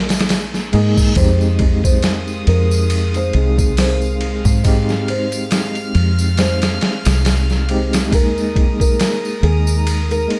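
A round, punchy dub bass sits up front in this hypnotic, smoky trip hop excerpt, its dark fingered tone anchoring the low end alongside a gritty, pitched-down sampler drum kit with a thumpy kick, a medium-tuned snare, hi-hat and ride, all compressed and tape-colored as if re-recorded in a small room. A quiet tambourine adds a small-room acoustic shimmer beneath the beat. A tine electric piano supplies clean accompaniment with tremolo, vintage 12-bit sampler grit and tape echo, while a soft, felt-muted upright piano carries an intimate, mellow melody through its own tape echo. A faint electronic reverse cymbal flickers in the background from 0.5 to 1.2 seconds, just as a chamber string section enters at 1.2 seconds with bowed, reedy gut-string chords in a period style. The harmony moves from Ebsus4 to a long Fm7 and returns to Ebsus4 at 8.1 seconds, all in a dry, echo-heavy mix cut from a longer piece.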